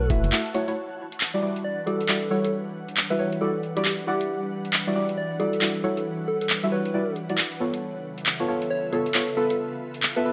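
UK garage in a two-step vein, this short cut from a longer piece has a late-night, soulful mood and a swung sixteenth-note feel. An ethereal, airy pad holds sustained chords across a broad range from the very start, its detuned unison tone softened by ensemble chorus and its own reverb while sidechain pumping makes it breathe against the beat. A deep, mellow chord stab sits up front with a dark, warbling vintage colour, its decaying hits carrying chorus, digital delay and a filter sweep. Alongside them, a soft struck synth lead plays the melody with a round, keys-like FM tone, brightened by chorus, tremolo and digital delay. The garage drum kit is electronic and layered, with handclaps and metallic hi-hats pushed forward through overdrive, running from 0.1 to 10.1 seconds. The harmony moves from F#m7 to a long stretch of Em9, then turns to C#7alt at 7.8 seconds, all set in a moderate plate reverb.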